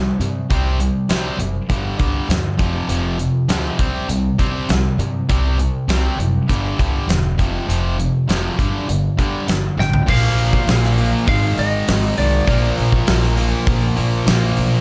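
A driving, heavy hard rock passage in C minor at 100 BPM opens on two bright, overdriven guitars picking a riff, one of them sludgy and set in the background, over a woody pizzicato upright bass and a huge arena drum kit with a fat snare and punchy kick. As a drum fill rolls in at 9.8 seconds, a lightly driven, twangy lead guitar with digital delay plays a brief compressed melody from 9.8 to 12.7 seconds, and a crunchy, double-tracked overdriven guitar joins the riff at 10.1 seconds as the chords move to Bb5 and Ab. A light small-room reverb surrounds the parts in this excerpt cut from a longer piece.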